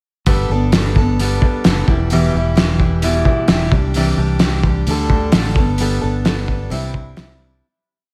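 A straight, steady four-beat rock groove from a muffled, cloth-damped drum kit, with a fat snare and tight kick sitting up front in a gritty, saturated, lo-fi sound, drives this short, nostalgic open-road piece of folk and heartland rock. A full-bodied jumbo steel-string acoustic guitar carries the accompaniment with folk strumming on open chord shapes, finger squeaks audible, moving through Gadd9, Em, Cadd9 and Dsus4, while a fingered electric bass plays a dotted figure beneath. The whole verse sits in a light small-room reverb and fades out from 5.8 to 7.6 seconds.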